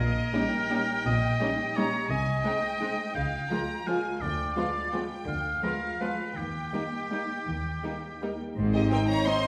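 Elegant and festive, this short passage cut from a longer orchestral ballroom waltz sways in three with a flexible, rubato feel. A lush violin section carries the melody with soft-attack, expressive vibrato, while a bright, up-front oboe sings a second line and a background violin section adds another. Beneath them, violas supply smooth, even accompaniment, a horn section holds sustained chords in the background, and cellos and double basses ground the harmony with a focused bowed bass. The chords move from Eb7/Bb through Ddim7 and Eb before arriving on Ab at 8.6 seconds, where a distant, very quiet clarinet and a mellow tuba briefly join, followed a moment later by a pure, hollow flute. A generous recital-hall reverb wraps the ensemble in a roomy, ceremonial glow.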